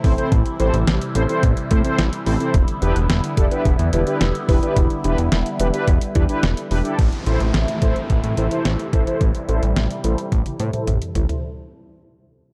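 Melancholic and cool, this synth-pop excerpt moves in a straight 4/4 feel, set in a dark production with light reverb. A fat, thick analog bass and a detuned 8-bit drum machine, with a thumpy kick, medium-tuned snare, hi-hat and toms, sit up front. Mellow synth brass, round and brassy with detuned sawtooth tones and chorus and phaser, carries the accompaniment, while a swirling phased pad holds sustained chords with a slow attack. The harmony moves from Am to Em7 and back to Am. At 7.0 s a filter sweep arrives along with an electronic downlifter in the background, and a drum fill begins at 10.3 s before the cut.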